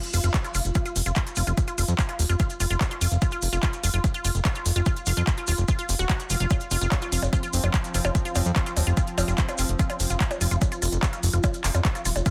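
Psychedelic trance with an alien, hypnotic pull, cut from a longer piece: a punchy, up-front electronic kick and a fat, detuned analog bass with ring modulation and a filter sweep drive it, while a tape-warm techno kit adds smooth hats, handclaps and percussion blips, with grainy maracas in the background. A lush, detuned unison pluck riff carries vintage 12-bit sampler grit, delay and sidechain pumping. At 6.8 seconds a pulsing gated texture with chorus and its own reverb enters behind it, all within a dense, heavily limited, fairly dry mix.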